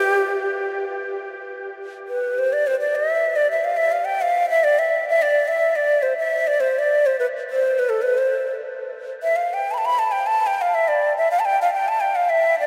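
A single breathy ney sounds up front and close, its soft-attacked, reedy cane tone bathed in a huge, wet reverb that hangs for seconds in a vast, echoing space. This Balkan folk excerpt moves in 7/8 at 208 BPM counted in eighths, with a straight feel in G mixolydian, tuned slightly above standard pitch. The ney is the only voice, ranging from G4 up to B5 with a warm vibrato, and the mood is virtuosic and exuberant. After a brief opening that lasts to 1.2 seconds, it takes a solo from 1.2 to 12.7 seconds. The cut is taken from a longer piece.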